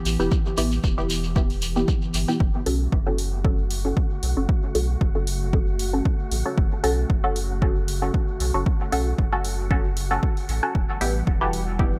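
Hypnotic and cavernous, this dub techno cut at 115 BPM in F# phrygian rides a punchy, overdriven, up-front kick and an overdriven electronic hi-hat over a smooth, dark sine sub bass, while muted, detuned filter-plucked chord stabs with phaser and dub echo pump against a warbling, nostalgic, lo-fi pad in the background, a grainy acoustic shekere drops out at 2.4 s as the chords move from Em to F#m, and an airy, breathy wind-like tuned noise texture drifts in at 2.9 s inside a digital ambience.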